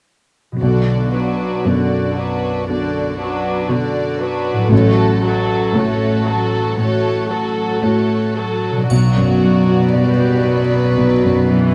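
A soft, felt-muted upright piano carries the accompaniment in this sorrowful, moving cinematic excerpt, its thick-felt mellowness giving it an intimate, warm feel across a range from deep bass up to the middle register. Set in B minor at a slow 58 BPM in 4/4 with a rubato feel, the orchestral score rests on a ringing, thumb-plucked concert harp playing arpeggios in the background, while a dark violin section carries a second line with light vibrato and a smooth top. A viola section adds a pure, floating accompaniment, and a cello section holds a low, narrow bass line further back, all the strings bowed sul tasto with soft attacks. The harmony moves from B minor to F-sharp minor over A at 4.7 seconds and returns to B minor at 8.9 seconds, when a new section begins and a close, dry triangle enters faintly in the background. Light reverb and detailed, close miking keep the strings and piano present and tender.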